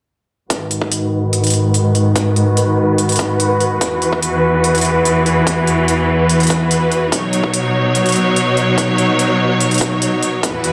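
Heavy and chaotic, this half-time wobble dubstep fragment puts a clear, up-front bowed string section in focus, holding sustained chords with vibrato while sidechain pumping and a low-pass filter sweep shape it through G#m7, Esus2 and Badd9. Beneath it, a punchy electronic kick and crisp hi-hats, both layered and tape-warm, drive the drums, and a faint riser enters in the background at 10.5 seconds. A moderate plate reverb and the sound of a big system playing in a bare room give the piece a large studio space.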